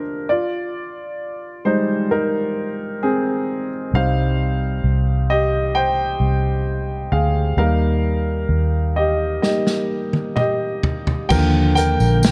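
Heartfelt and hopeful, this pop ballad fragment opens with an up-front, natural grand piano solo, joined at 3.9 seconds by a dark, round, foam-muted electric bass. A studio-room acoustic drum kit with a punchy kick arrives with a fill at 9.4 seconds. At 11.3 seconds a mellow, detuned sawtooth pad with chorus and a jingly tambourine settle into the background, all framed by light small-room reverb and a warm production.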